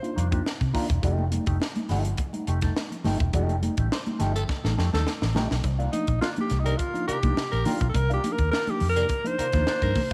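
A sly, funky funk groove at 104 BPM in C dorian, this excerpt is cut from a longer piece and moves between Cm11 and F9 in straight 4/4. A tight, small-room drum kit sits up front with a punchy kick and high-tuned snare, joined at 0.2 seconds by a dark, foam-muted fingered electric bass that is round and amped. A mellow electric guitar with wah provides accompaniment, while a tine electric piano playing stabs sits in the background. Congas with a thick, damped skin enter at 1.0 seconds, and a gritty, growling tenor saxophone adds a second line from 3.9 seconds. A band accent and a drum fill lead into the second section, where the breathy alto saxophone takes an up-front jazz solo from 5.6 seconds, using subtone, scooped notes and light vibrato. The mix carries a light reverb.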